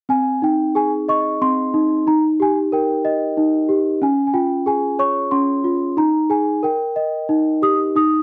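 In a straight 3/4 lilt at 91 BPM, this short excerpt of children's music in Ab major carries an innocent, tender mood. A lone celesta sings the melody across a range spanning C4 to Eb6, its bell-like, delicate tone softened by medium felt hammers into something sweet and dark, sitting up front with a slapback echo trailing each note. The harmony moves from Ab through Eb and Db to an Ebsus4 that resolves to Eb at 6.6 seconds, all captured in a dry, close 1970s-style studio sound.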